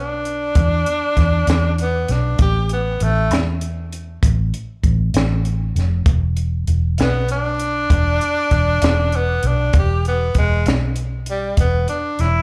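A clear tenor saxophone and a round, foam-muted electric bass open this gritty, rollicking slow blues at 65 BPM in 12/8, with a compact cocktail drum kit of hi-hat, kick and snare joining at 0.3 seconds. The saxophone takes a soloing, jazz-style line with vibrato, a soft attack and a slapback echo, while the amped bass stays punchy and dark, and the drums offer a tight kick, a high-tuned snare and a rolled-off top. Everything sits up front in a small room, heard as a live gig through the venue's PA with club reverb, in a short cut from a longer piece that moves through E5, A5 and an E7 with its third omitted.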